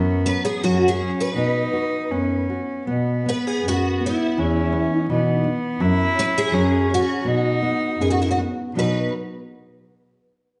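A fado-style ballad, nostalgic and tender, moving in a loose, rubato 2/4 and cut from a longer piece. A picked twelve-string acoustic guitar carries the melody up front from 0.3 seconds, its octave-doubled strings shimmering under an ensemble chorus effect. Beneath it, a bowed cello with a clear, slightly nasal tone and light vibrato sings a second line, while a nylon-string guitar fingerpicks a full-bodied classical accompaniment. A close-miked bass clarinet anchors the low end with a dark, breathy jazz-style voice, scooping into its notes. The harmony circles around F#5 and B5 power chords before settling on B at 7.3 seconds, all set in a recital hall reverb with a softened, rolled-off top.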